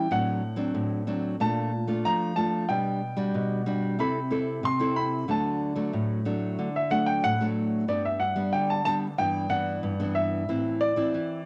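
The sound is that of a home recording on cassette, with a moderate spring reverb and a touch of studio ambience giving the room a soft glow. This joyful, sunny samba excerpt in a straight 4/4 feel opens with a clear, polished baby grand piano carrying the melody up front in a high register. The piano takes a solo through the first 7.9 seconds over a full-bodied, fingerpicked nylon-string guitar that plays accompaniment in a classical style, its finger squeaks audible alongside the sound of the strings. Both parts sit present and close, each colored by the cassette tape, while the harmony moves through colorful chords such as D7/A, Bbmaj7 and Gmaj7/B before settling onto G, Em7/G and Am in the closing passage. The piano plays until 11.5 seconds and the guitar until 11.4 seconds, where the clip breaks off from the longer piece.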